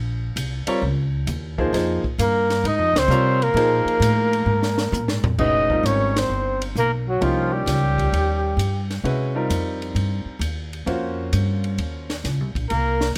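A dark, breathy trumpet with scooped notes and vibrato carries the melody up front in this hypnotic, intense modal jazz excerpt at 131 BPM with a swung feel, entering at 2.2 seconds together with a whispered, subtone alto saxophone on the second line, over a woody pizzicato upright bass that opens alone, a dry cocktail drum kit with dark cymbals, a high-tuned snare and a punchy kick that enters at 0.4 seconds and plays a fill before the move from Bbm11 to F9sus4 at 5.4 seconds, and a brilliant, vintage upright piano, set in light reverb.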